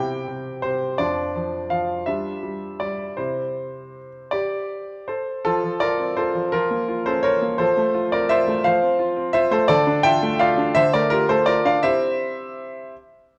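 Graceful and playful, this classical-period piano sonatina fragment in 6/8 drifts along with rubato at 56 BPM, its clear, smooth grand piano sitting up front with a vintage, short-sustained tone as it moves from C major into F major at 5.5 s, all set in a moderate recital-hall reverb and coloured by the warbling pitch drift of worn old cassette tape.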